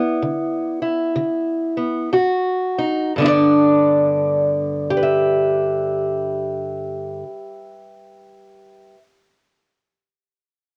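This acoustic country blues excerpt is a gritty, laid-back solo piece in G major, moving at a slow 56-68 BPM in 4/4 with a swung eighth-note feel. A fingerpicked steel-string acoustic guitar, parlour-sized in character, carries everything alone, ranging from G2 up to E5 and sitting up front in the mix with a dark, boxy tone and the grain of cassette tape. The opening passage slows down and contains a stop lasting until 2.1 seconds, with a rootless G6 chord moving to Ab5 before G6 returns as the second passage begins at 3.2 seconds. The sound is that of a home recording on cassette, touched with light studio reverb and tuned slightly off standard pitch at A4 = 439 Hz. The fragment is cut from a longer piece.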